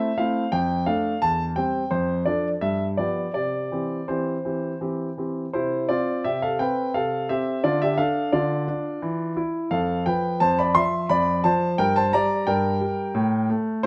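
A clear concert grand piano plays alone, up front, with a deep bass and long sustain, in this cheerful, playful classical-period sonatina cut from a longer piece, moving at 86 BPM in 3/4 with a rubato feel in C major. It opens on A minor and moves through D minor, C and G7 to settle on C by 3.3 seconds, and a new section begins at 5.5 seconds, where the chords drop away for stretches between returns to D minor and F. A moderate reverb from a large studio gives the natural tone a sense of space.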